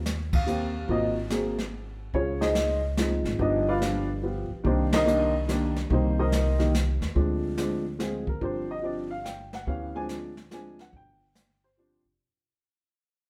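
A swinging 3/4 pulse at 143 BPM drives this late-night jazz piano trio excerpt, cut from a longer piece, with brushes on a dark-cymbaled kit and a boomy kick setting the lilt. A woody, thumpy gut-string upright bass plays pizzicato beneath an up-front, boxy upright piano carrying the melody in plate reverb, the whole trio heard from further back in a club room. Band accents land at 0.3 and 4.8 seconds over rich extended chords, and the music fades out from 7.2 seconds as the harmony turns to Dm7b5 and suspended G chords.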